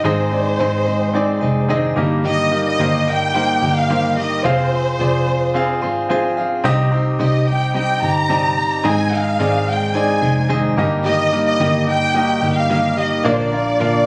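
A dark, lush symphonic violin section carries the hopeful melody in this 14.1-second pop excerpt at 109 BPM in Eb major, over a clear, polished baby grand piano that adds fills at 0.6 and 5.5 seconds, a bright, compressed direct-recorded clean electric guitar riff, and a round, foam-muted picked electric bass, all heard through the light club reverb of a phone recording in the room as the chords move from Ab through Eb/G, Fm and Cm to Bb.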